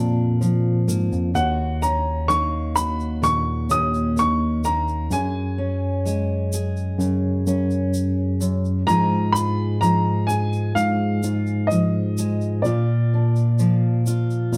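A dark, woody upright piano carries the melody over a full-bodied fingerpicked steel-string guitar with audible finger squeak and a clean tine electric piano holding the bass, joined at 0.4 s by a grainy, close tube shaker, in this wistful, haunting acoustic folk excerpt at a slow 64 BPM in Eb minor, moving from Ebm7 through Gbsus2 and Absus2 to Bb under light reverb.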